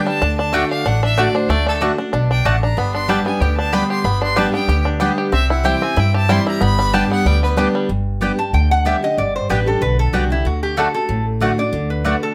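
A brisk 188 BPM in 4/4 with a light swing on the eighth notes drives this rustic, lively bluegrass excerpt in G major, cut from a longer piece. A clear, smooth fiddle with light vibrato takes the lead at the start, bowed by a single player until 7.5 seconds, while a twangy, percussive banjo rolls arpeggios with fingerpicks until 7.9 seconds. Underneath, a bright, full-bodied dreadnought guitar picks the accompaniment with the occasional finger squeak, and an up-front mandolin adds woody, double-strung stabs. The pizzicato upright bass sits thumpy and dark at the front, anchoring the changes through D, G and C. At 8.4 seconds a metallic, nasal lap resonator guitar takes over the melody with a fingerpicked slide, its sound carrying a plate reverb. Close, detailed microphones and light room reverb keep every string articulate.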